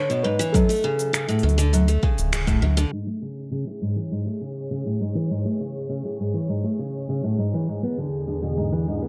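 A light reverb and a gentle low-pass filter give this brief cut from a longer folktronica piece a soft, hazy sound, with a pastoral, warm mood at a steady 101 BPM in straight 4/4, in A major and tuned to A4 = 435 Hz. Up front, a picked steel-string acoustic guitar plays auditorium-toned arpeggios roughened by vintage 12-bit sampler grit and delay, and from 2.9 seconds a filter sweeps across it. A felt-muted upright piano opens with a dark, intimate melody, its thick felt and audible action noise caught close, before it falls away at the band accent at 2.3 seconds. Tape-warm electronic drums, with smooth hats, finger snaps and a shaker, sound as if re-recorded in a large room, while a deep electronic kick and a round, sawtooth-and-sine analog bass briefly anchor the low end early on. A detuned, warbling analog pad with chorus and a slow attack enters at 3.8 seconds, spreading sustained chords alongside the guitar as the harmony moves through E7, Dmaj7 and Amaj7.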